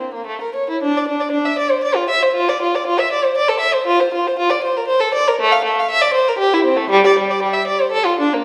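Flowing and introspective, this brief cut from a baroque-style suite movement for unaccompanied violin moves at 118 BPM in 3/4 with a rubato feel, as a single up-front bowed violin, warm with a smooth top, sings expressively from G3 to F5 with vibrato and portamento, its lines blooming into the wet reverb of a recital hall.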